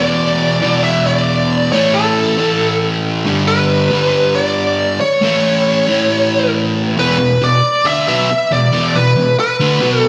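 Aggressive and heavy, this is a short rock excerpt cut from a longer piece, driving along at 137 BPM in a straight 4/4 feel in E dorian. A sludgy distorted guitar carries the riff throughout, double-tracked, overdriven and picked, sitting up front with a warm tone that reaches from E2 to D4. Over it, a bluesy overdriven lead guitar plays the melody between A4 and E5, picked and distorted, its tone warm, also placed up front. The harmony moves from E5 to A5, then G and A, before returning to E5 at 7.0 seconds, where the opening passage gives way to a new section that runs to the end at 10.1 seconds. A wet scoring-stage reverb with a long tail gives the whole recording a big arena sound.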